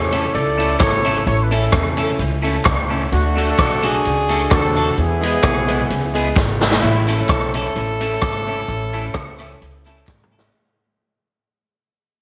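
A punchy horn section carries the melody up front with a light vibrato, leading a bouncy, upbeat ska groove with a gentle swing. The drum kit sits forward in the mix, with kick, medium-tuned snare, rim clicks, hi-hat and toms, all given a hall character and a slapback echo. Beneath it, a pizzicato upright bass on gut strings supplies a dark, thumpy bottom, while a twangy, picked electric guitar with phaser and slapback echo and a slightly detuned, worn upright piano playing stabs sit in the background. A very quiet, crisp group handclap joins at 0.8 s, and light reverb with small-room ambience surrounds the band. The chords move from A through D and E before returning to A at 6.8 s, where a drum fill leads into a second section that fades out, with one more fill at 10.1 s as this piece, cut from a longer recording, ends.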